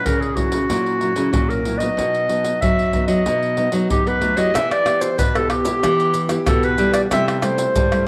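Lively yet bittersweet, this short samba-and-choro passage in E minor moves at 94 BPM, with a roomy, slapback-echoed solo clarinet carrying the melody up front over a fingerpicked classical nylon-string guitar whose fresh strings give off finger squeak, a second nylon-string guitar playing the bass line, and a tight surdo, pandeiro, maracas and tamborim sounding close and dry, all set in a moderate plate reverb.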